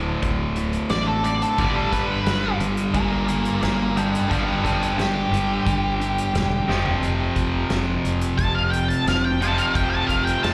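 Bittersweet and cathartic, this short cut from a longer quiet-loud alternative rock piece moves in a straight 4/4, heard as a live gig through the venue's PA with the sense of a recital hall around it. An up-front, double-tracked distorted electric guitar drives a bright overdriven riff with slapback echo from the start, while a very quiet, twangy clean guitar picks compressed arpeggios beneath it until 7.0 seconds. A fingered electric bass holds the low end with a warm, direct-and-amped tone, and a loose indie drum kit sits distant and roomy, with a fat snare, punchy kick, hi-hat, toms and a rolled-off top. At 0.9 seconds an octave-fuzz lead guitar takes the melody as a solo, its dark, fuzzy tone also carrying slapback echo and standing up front. A brief drum fill lands at 6.7 seconds as the chords move through D5, G5 and F5.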